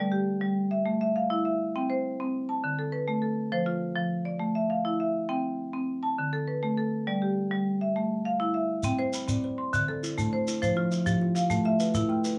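Warm and rippling, this short cut from a longer piece is a southern African traditional groove built on an interlocking, mbira-style cycle in a straight compound metre. A marimba struck with hard mallets carries the music alone from 0.0 seconds, spinning arpeggios that span its low and high registers with a woody, percussive attack on rosewood bars and a vintage, band-limited tone placed up front. The harmony circles through a repeating chord pattern that returns as the cycle begins again. At 8.8 seconds a grainy, mellow shekere slips in at a lower level, its acoustic sound catching the air of a live room. Moments later, at 9.0 seconds, a kalimba joins with its own plucked arpeggios, its thumbnail attack on a solid board giving a warm, bright, ringing, mid-forward voice. A light reverb gives the whole recording a gentle sense of space.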